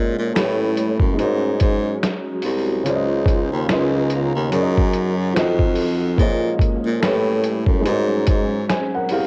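A hazy home cassette recording with light reverb and studio ambience frames this melancholic lo-fi hip hop excerpt, swung in 4/4 and cut from a longer piece. A felt-muted upright piano lays down mellow, intimate accompaniment over silky, vintage string-machine chords sitting in the background with phaser and ensemble chorus, while a clear baritone saxophone carries the bass line up front with vibrato, a soft attack and a touch of transformer saturation. From 0.4 seconds a compressed, pitched-down sampler-style drum kit joins with a thumpy kick, medium-tuned snare, hi-hat and finger snaps, as the harmony drifts through chords such as A9, Dbmaj9 and Bbm11.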